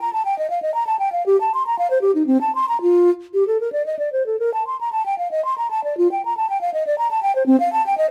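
A lone concert flute opens this brief classical passage and carries it alone for its full 8.1 seconds, in the manner of a baroque-style fantasia. The tone is airy, mellow and hollow, with vibrato and tongued articulation, and the instrument sits up front in a light reverb. The music moves in 3/4 at roughly 109-124 BPM, but the rubato lets the pulse breathe freely, giving a serene yet dance-like lilt. The line ranges from C4 to C6, and the flute is tuned to A4 = 442 Hz. This fragment is cut from a longer piece.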